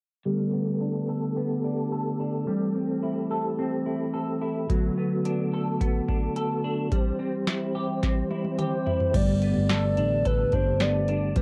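A small, damp booth and the soft haze of a home cassette recording frame this dreamy, blissful dream pop piece in G major, cut from a longer piece and moving at 108 BPM in a straight 4/4. A mellow, flute-like tonewheel organ holds sustained chords with chorus vibrato and a hint of key click, while a dark, hollow-bodied semi-hollow electric guitar plays clean fingered arpeggios through ensemble chorus and analog delay. Both sit up front under a filter sweep as the chords move from Gadd9 through Am7, Bm7 and C. At 4.7 seconds a booming analog drum machine arrives, overdriven, with a deep kick, crisp snare and metallic hats, closing its first stretch with a fill. A soft, woody clarinet-like synth lead enters at 8.6 seconds with a gentle vibrato and a tape-worn chorus and delay. At 9.1 seconds, as the harmony returns to Gadd9, a round, punchy, foam-muted fingered electric bass settles in underneath.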